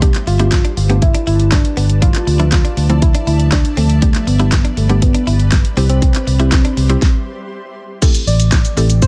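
A dry mix carries this driving, bittersweet dance-pop fragment at 120 BPM in straight 4/4, built on a punchy electronic pop kit of kick, fat snare, handclaps, hi-hat, shaker and crash, and a dark, round fingered bass that pumps with sidechain compression. A woody, mallet-like FM pluck with chorus and a blurred, evolving granular pad, both also pumping, fill out the chords as they move from Gadd9 through Dmadd9, G and C. A gentle, keys-like synth lead with phaser, delay and vibrato carries the melody from 0.3 seconds, while a twangy clean guitar riff sits in the background until a stop at 7.0 seconds, before the music lands on Am7 at 8.0 seconds.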